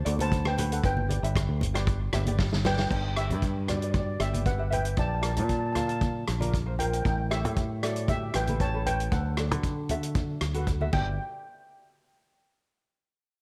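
A straight 4/4 calypso groove, sunny and bouncy, sets a mellow, shimmering steel pan melody with slapback echo over a round, punchy fingered electric bass, thumb-plucked ukulele with its own slapback, a dry, tight soul drum kit that fills at 2.4 seconds, and very quiet low-tuned congas, all placed in a lush hall with a big arena sound as chords move from D7 and G through Bb, A7 and Dadd9 before ending on G in this excerpt from a longer piece.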